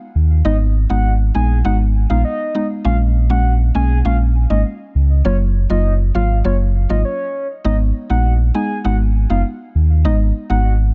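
Bouncy and tough, this short dancehall fragment rides a straight four-four feel from its opening moments. A deep sine sub bass doubled at the octave sits up front in the mix. Its fast attack and sustained tone anchor the low end from 0.1 seconds. Just behind it, a mallet-like FM synth pluck supplies chorused accompaniment in the middle register, with a woody, percussive, decaying sound and a noise layer. Carrying the melody above, a soft octave-layered lead blends triangle and sine tones with a sub octave, giving a round, mellow voice touched with vibrato, chorus and digital delay. The harmony moves through G# minor, A#m7 and F#maj7, then returns to G# minor at 7.7 seconds as a new section begins within a digital ambience.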